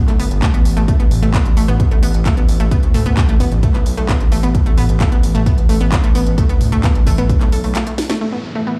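A big, reverberant room sound frames this industrial, driving stretch of peak-time techno at 131 BPM in straight 4/4, cut from a longer piece. An up-front electronic kick, layered and re-recorded in a large room, anchors the groove, while a gritty, aggressive synth bass built from square, sawtooth and sync tones with a moving notch pumps against it. A bright, detuned analog pluck carries the riff through chorus, tube saturation and dub echo. An overdriven techno kit adds a cracking snare, smooth filtered hats, handclaps, tambourine and toms, with the hats, toms and percussion pumping. The harmony rests on a rootless Gadd9 until a short break near 7.8 seconds, marked by a drum fill and a band accent, lands on A5 at 8.2 seconds, where an electronic downlifter sets in and an eerie, metallic FM drone with its own reverb follows at the tail.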